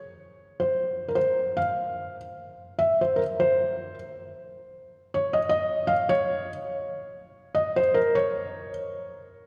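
A felt-muted upright piano, soft and intimate with audible action noise, carries this dramatic, passionate Mexican folk excerpt alone from 0.6 to 8.7 seconds, playing high between Bb4 and F5 at 151 BPM in a rubato 3/4 with a light swing, set up front in a long, wet church reverb.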